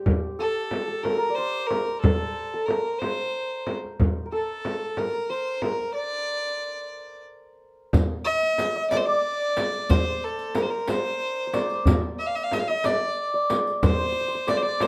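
Hypnotic and soulful, this Persian modal ensemble piece moves at a slow 61 beats per minute in a straight 6/8, set in the D dastgah shur with instruments tuned slightly below standard pitch. A clear, earthy violin carries the melody, bowed by a single player with light vibrato; it sits up front yet has a distant quality. Beneath it, a hammered santur plays a second line in a mellow, shimmering, ringing voice. The tombak gives a warm, deep pulse with a small-room feel, while a small, bright frame drum played with soft hands stands up front. The ensemble halts for a stop from 6.0 to 7.9 seconds, and when the second section begins at 7.9 seconds a riq joins far in the background, its bright jingles heard in a large, distant space. The production is dark and warm, with moderate studio reverb, and this passage is cut from a longer piece.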